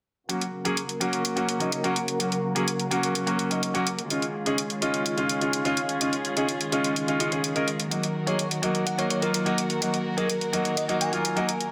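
A straight 4/4 pulse at 126 BPM drives this triumphant, anthemic festival progressive house excerpt in F# major, where bright, up-front electronic hi-hats sit alongside a clear baby grand piano with tape echo that carries the F#, C#add9 and D#m chords over a dark, intimate chamber string section bowed sul tasto through a filter sweep, until a sparkling, bell-like FM electric piano with chorus, phaser and delay enters with the melody at 8.3 s, all set in a small digital room within a dense, heavily limited modern master.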